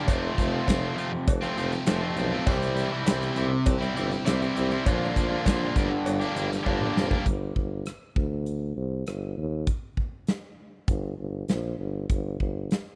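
A roomy tuba carries the bass through this gritty, driving classic rock excerpt in G dorian at 100 BPM, beneath two bright, overdriven, picked electric guitars, one a cranked stack with spring reverb, that play a riff over F, C, Bb and G minor. A big acoustic rock kit with a punchy kick and medium-tuned snare pushes along up front, joined by a very quiet metallic cowbell, and a drum fill at 6.7 seconds closes the first section. The guitars stop by 7.3 seconds, leaving tuba and drums to carry on in a dry, close 1970s-style studio sound.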